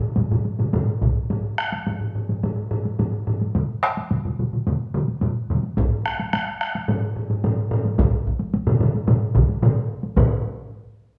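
A straight 4/4 pulse drives this powerful Japanese traditional taiko excerpt, pushing faster from start to finish as the band plays live together in a reverberant large studio. Two solo taiko drums struck with hard sticks sit side by side, one close and dry, the other up front yet carrying a distant, roomy sound, while a compressed, saturated taiko ensemble on heavy sticks hits hardest of all. A second hard-stick ensemble in a small room adds a brief burst at 1.0 seconds, then rejoins at 5.8 seconds and stays until 10.4 seconds.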